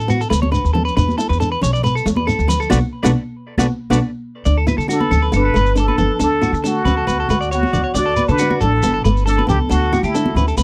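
A straight 4/4 groove at 137 BPM drives this sunny highlife guitar band excerpt in D major. It rests on woody pizzicato upright bass up front, with grainy shekere and, in the background, high-tuned, hard-hand congas, while a twangy, slightly broken-up electric guitar picks arpeggios over fingerpicked flamenco guitar, and the band hits an accent from 2.7 to 4.5 seconds. At 4.9 seconds a plunger-muted trumpet steps forward with a wah-wah jazz solo trailed by tape echo, as a buzzing marimba with medium mallets adds a dry second line in the background, all in a close 1970s-style studio sound.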